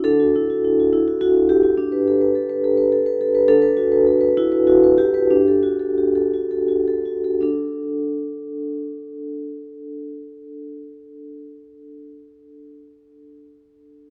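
A solo vibraphone, struck with soft mallets, opens the passage with a mellow, ringing chord, its tone gently shimmering from a slow motor vibrato. This short contemporary classical piece moves in three with a free, rubato feel and a warm, playful mood. The harmony drifts through open, suspended and added-note colours over a steady D foundation, and the playing eases into a gradual slowing between 2.6 and 7.4 seconds before a new section begins at 7.4 seconds on a bare, open chord. The instrument sits up front and mid-forward, keeping to a compact middle register, with a metallic edge softened by the dark production. A moderate recital hall reverb lets each note bloom and linger, and the passage, cut from a longer work, ends at 14.1 seconds.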